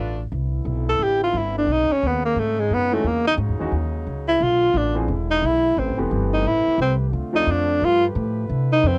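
An upright bass opens this swinging jazz excerpt alone, its woody, thumpy gut-string pizzicato sitting up front at a brisk 176 BPM in 4/4. A brilliant trombone section slips in almost immediately with tight, close-miked sustained chords that stay in the background, and by 0.9 seconds a breathy tenor saxophone takes the lead with a solo full of vibrato and scooped notes, its smooth top riding out front. A grand piano with a warm, natural tone adds accompaniment from 2.9 seconds until 7.8 seconds. The harmony moves through rich extended chords, from Cmaj13 and B69 to Emaj13, then through Bm7b5, E7b13 and Am9 before settling on Dm7 and G9. The energetic performance carries the character of a home cassette recording, with the saxophone, trombones and piano colored by tape and everything set in a wet booth ambience.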